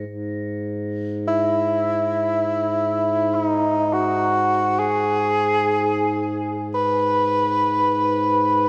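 World meditative music in free time, haunting, cut from a longer piece. A reedy, breathing pedal harmonium holds a close-miked, dry drone throughout, while shimmering crotales ring briefly and airily in the background until 0.5 seconds. At 1.3 seconds a clear solo bassoon enters up front with a classical-style melody and light vibrato, touched by analog delay, all set in a lush hall reverb with a dreamy, cassette-tape character.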